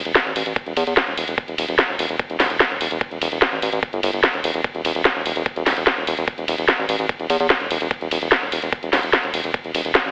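A straight 4/4 pulse drives this psychedelic trance clip at 147 BPM in E minor, tuned to A4 = 437 Hz. A knocking electronic kick sits under an up-front drum and bass kit of cracking snare, bright hi-hats and ride cymbal, both layered and re-recorded in a small room. A round, deep analog bass, dark and sustained with a fast attack and wave-folded edges, anchors the driving, alien mood, while light reverb and a heavily compressed, telephone-like radio tone give the whole mix an otherworldly cast.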